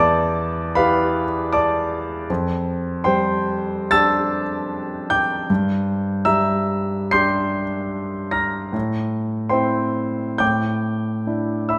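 Rubato and unhurried at roughly 65-80 BPM in 4/4, this nocturnal, hazy impressionist solo piano excerpt lets a clear, intimate concert grand, present and up front with deep bass, long sustain, polished tone and audible action noise, drift from E2 to C7 through Em7, F69, Gm6, Am7 and A7sus4 over 11.8 seconds, bathed in a wet recital hall reverb.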